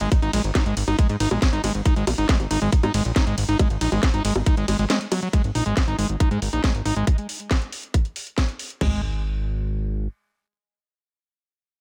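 A straight 4/4 pulse at 138 BPM drives this intense, alien psychedelic trance clip, which opens on a drop over a G#5 chord: a tight, up-front drum and bass kit of kick, crash and toms is layered with a second kit of cracking snare, metallic hats, ride and bongos, while a fat, detuned analog bass, saturated and ring-modulated with a filter sweep, holds the low end until 10.1 s, and a squelchy, screaming acid line, resonant and aggressive, runs through distortion, chorus, tape echo, cassette grit and sidechain pumping until 9.0 s, in a dry, close-sounding space.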